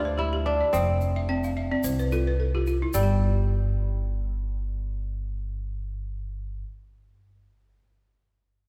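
Set in a resonant church acoustic with a long, wet reverb tail, this short cut from a longer piece of West African string and xylophone music has a hypnotic, warm mood and a lightly swung 4/4 feel. The kora carries the melody up front, its fingerpicked notes crisp and ringing, while the balafon spins arpeggios over a broad span, its hard rubber mallets drawing a woody, buzzing, boxy tone that stays dry and close. Beneath them, a pizzicato upright bass on steel strings sits up front with a dark, growly sound. A grainy, bright egg shaker joins from 0.7 to 3.2 seconds, and the balafon adds a fill starting at 1.1 seconds. The harmony moves from G5 to F5 and then gives way to an unharmonized stretch as the passage shifts into a second section.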